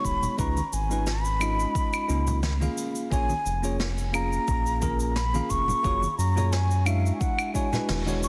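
A round, dark analog bass sits up front, sustained and evolving, beneath a breathy, mellow concert flute melody with vibrato and delay, and a bell-like tine electric piano accompaniment treated with tape echo, in a relaxed, smooth sunset chillout groove at 88 BPM with a light 16th-note swing. A deep, layered electronic kick, a brushed snare with cabasa and claves, and damped, low-tuned congas set in the background drive the rhythm through chords of C#9, A#m7, F#maj9 and E13. The band closes on an accent at 7.9 seconds, with light reverb and a dense, heavily limited modern master.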